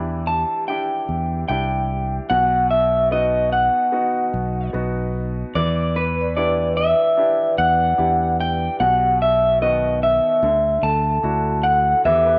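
Melancholic and heartbroken, this slow acoustic folk-pop ballad in E minor moves at 74 BPM in a straight 4/4 as it sits on Em7 and B before turning to Dadd9. An up-front, slightly broken-up electric guitar through a small old amp carries the melody with harmonic tremolo, over a brilliant, woody upright piano accompaniment, mellow ringing vibraphone arpeggios in the background, and a direct, amped fingered electric bass. A distant clarinet enters with a brief second line at 12.0 seconds, and a wet spring reverb with small room ambience wraps the sound.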